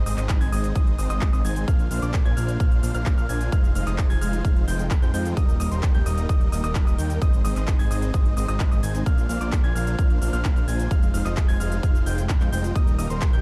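From the first moment, a brilliant concert grand piano plays high arpeggios and a huge, detuned supersaw riff rides over a fat analog bass, all three pumping with sidechain and the piano and supersaw trailed by digital delay, as a punchy, up-front electronic kick and a big-room kit of handclaps, crisp hi-hats and shaker drive this anthemic, triumphant slice of festival progressive house, cut from a longer piece, through a dark, warm production.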